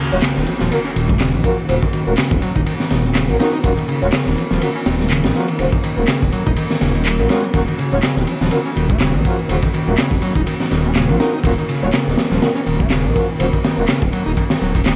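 A very quiet electronic sub drop opens this funky, playful breakbeat cut alongside a soft, flute-like tonewheel organ holding sustained chords through a slow rotary speaker and sidechain pumping, and a squelchy, resonant acid bass riff with distortion, lush chorus and delay. A deep, rumbling detuned saw bass, mellow brass stabs with delay, analog shaker and handclaps, and an up-front, saturated breakbeat kit with a punchy kick, high-tuned snare and dark ride cymbal enter almost immediately with a swung sixteenth-note feel. The mix sits in a small room with vinyl crackle. The sub drop ends at 1.7 seconds and the brass drops out at 13.8 seconds, while the other parts carry on to the end of the excerpt.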